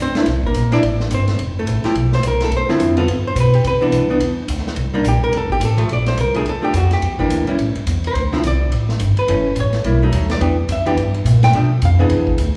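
A picked archtop guitar with a dark, clean hollow-body tone opens together with woody, thumpy pizzicato upright bass on gut strings, both up front, in a relaxed, playful small-group swing and bop cut from a longer piece, moving briskly at 213 BPM in C major. A vintage drum kit joins at 0.1 s, sitting lower in the mix with dark cymbals, a medium-tuned snare, a punchy kick and a rolled-off top, its small room pumping around the hi-hat, ride and snare. The guitar comps through a restless progression that drifts from Cmaj9 toward Bbmaj7 and on through a chain of minor and dominant chords, while a wet recital-hall reverb gives the trio a spacious, church-like glow.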